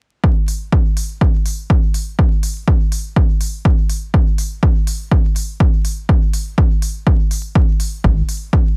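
Dry and close, with a vinyl crackle hanging over the whole recording, this short hypnotic, nocturnal dub techno piece is cut from a longer track. A punchy analog electronic kick drum sits up front from 0.2 seconds, with a smooth, layered electronic hi-hat entering at 0.5 seconds, both carrying the faint air of a small room. Near the end, at 8.0 seconds, a deep, round sine sub bass lands briefly with a fast attack and sidechain pumping.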